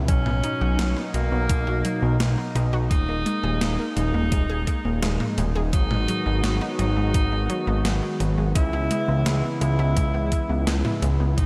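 Soaked in a lush hall reverb, this dreamy, moody synthwave excerpt drives along at 85 BPM as a thumpy, tape-toned electronic kick and a gated 80s digital drum machine with hi-hat, gated snare and toms sit under a fat, saturated, up-front analog bass, while a smooth, detuned analog pad pumps in the background, a round, bright analog pluck arpeggiates with chorus and delay, and a distant, roomy tenor saxophone with light vibrato carries the solo melody through diffuse ambient delay over B, D#sus4, G#m7 and C#m7.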